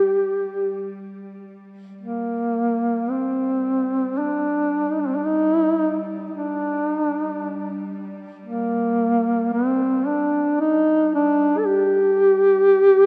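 A lush, wet hall reverb of 2.6 seconds surrounds this rough home demo mix, cut from a longer Caucasian folk lament in G minor that moves in a rubato 3/4 at around 56 BPM with a solemn, mournful mood. Up front, a solo duduk carries the melody between Bb3 and A4 with a mellow tone, soft attack, smooth top and vibrato. Well beneath it in level, an intimate bowed chamber cello section holds a warm G3 drone, played sul tasto with light vibrato and a soft attack.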